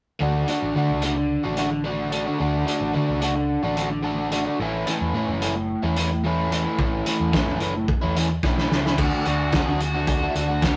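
A rough rehearsal-room recording with warm saturation and a moderate studio reverb frames this carefree, jangly indie rock excerpt at 109 BPM, moving from D to A and back. A bright, double-tracked overdriven guitar riff sits up front over a dark, round hollow-body picked bass, while a loose acoustic drum kit, with its fat snare, punchy kick and rolled-off top, joins at 0.5 s and plays a fill at 8.4 s. A second overdriven electric guitar enters with a quieter melody at 9.3 s as the music moves into a new section.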